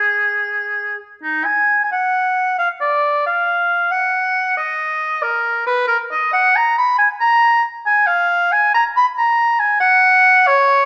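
Moving in a rubato 12/8 at around 91 dotted-quarter beats per minute, this short passage from a longer baroque-style fantasia for unaccompanied oboe has a solemn yet flowing character. The solo oboe plays for the whole 10.9 seconds, ranging from Eb4 up to Cb6. Its tone is clear and touched with a light vibrato, and it sits up front in the mix while keeping a slightly distant, roomy quality. A moderate recital-hall reverb, lasting about 1.5 seconds, surrounds the line and gives each phrase a gentle halo. Its elastic timing lends the playing an expressive feel in keeping with the classical style.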